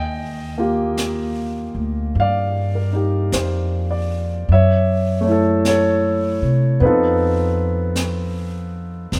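A warm concert grand piano anchors this brief, romantic jazz ballad excerpt, its open, deep-bodied tone sitting up front as it carries the accompaniment from the middle register into the upper treble. Moving at a slow 52 BPM in 4/4 with a gentle swing on the eighth notes, the mood is tender and unhurried. An upright bass, plucked pizzicato on steel strings, sits close alongside the piano with a woody, warm voice in the low register. A brush kit joins at 1.0 s, softer in the mix, with a high-tuned snare and hi-hat heard in a small, intimate room. The harmony glides from Ebmaj9 to Gbm7 at 4.5 s and then to F7#11 at 6.8 s, while the dry, close sound keeps the playing immediate and personal.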